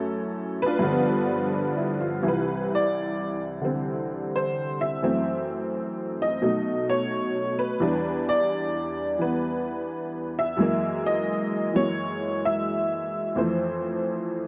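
Solo jazz with a relaxed, warm mood and a swung 4/4 feel, heard here as a brief fragment of a longer piece. A detuned, jangly honky-tonk upright piano carries everything from low bass notes to bright upper lines, sitting up front with a touch of tape echo. After a short opening on F#m7 and G7, its solo begins at 2.2 seconds over changes such as C, F#m7b5, B7, Em7 and F#9 before settling on Fmaj7 at 13.4 seconds, all in a dry, close 1970s-style studio sound with light reverb.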